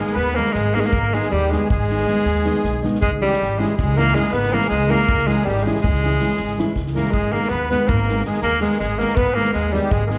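Fiery and virtuosic, this ten-second snippet of a longer Balkan wedding-band tune races in 11/8 at 321 BPM counted in eighths and keeps speeding up in G# harmonic minor, moving from G#m to C#m at 3.0 s and back at 7.1 s, with a clear, classical-style alto saxophone soloing up front over a reedy, shimmering musette accordion, a fingerpicked nylon-string guitar, a growly pizzicato upright bass with steel strings, and a small-room acoustic drum kit playing a tight kick and medium-tuned snare with bundle sticks, all heard from further back in a wet recital hall.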